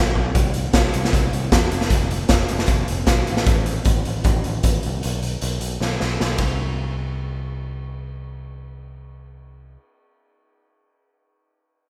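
A picked electric bass opens this upbeat, carefree indie rock excerpt, punchy and direct, and a raw garage drum kit comes in at 0.2 seconds with a fill. The kit sits up front, gritty and saturated in a bright, pumping stone room, with a boomy kick, a medium-tuned snare, hi-hat and ride, and it plays another fill from 5.8 seconds before stopping at 6.5, leaving the bass alone for the closing stretch. Light reverb and a rough home-demo mix give the whole piece a loose, homemade feel.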